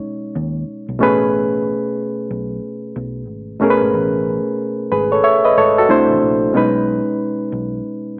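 R&B with a neo-soul lean, this short excerpt moves at 92 BPM in 4/4 with a swung sixteenth-note feel, smooth and relaxed in mood. A bright, reedy electric piano carries the accompaniment from the start, clean and up front, heard through its built-in speakers with a touch of spring reverb. A vintage muted electric bass, played with the fingers, enters at 0.4 seconds, its dark, round, foam-muted tone sitting well beneath the keys. The harmony rests on B6 and Amaj9, turning briefly to C6 before settling back on B6. The whole has a light reverb and a small-speaker character, giving it an intimate closeness.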